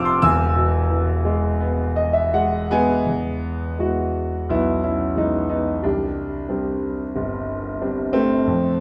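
Classical solo piano in a lyrical vein, this short fragment of a longer piece has a sunny, warm mood. A concert grand carries everything alone in E major, moving in 4/4 at a flexible rubato pulse of 77 to 92 BPM and ranging from the low E1 up to A6. The instrument sits up front with a deep bass, a boxy body and long sustain. Ringing hall reverb surrounds it. A brief piano fill at 1.6 seconds leads into a new section at 3.1 seconds, where the harmony moves from the opening E chord to a Csus2 at 5.8 seconds.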